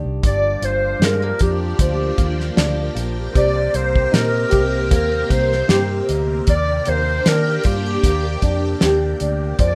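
A rough home-demo mix with light reverb frames this lonely, hazy fragment of indie bedroom pop at 77 BPM in 4/4, with a gentle 16th-note swing moving over Gm7, Cm7 and Ebmaj7. Up front, a cloth-damped drum kit with a fat, saturated snare and tight kick sits beside a round, foam-muted vintage electric bass, while a dark, boxy, thumb-plucked flamenco guitar wavers with subtle chorus and warbly pitch drift. A bright, swirling string machine with phaser and ensemble chorus enters at 0.2 seconds, and a mellow, soft-attacked solo clarinet takes the melody from 0.3 seconds, carried by ensemble chorus and slapback echo.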